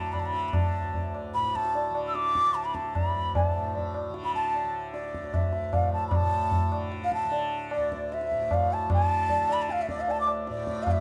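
An airy bamboo bansuri carries the melody up front, its vibrato and crisp attack giving the lifted highs a breathy sheen as it moves through raga Shivaranjani in D. This introspective, meditative Hindustani classical excerpt moves at 151 BPM in a straight 7/4. Beneath it a softly plucked tanpura holds a buzzing, shimmering drone, while a high-tuned tabla with a short ring sits close and forward from 0.1 seconds. The trio plays live together in a stone room whose reverb adds a gentle glow, and a new section begins at 6.1 seconds before the passage is cut off at 11.0 seconds.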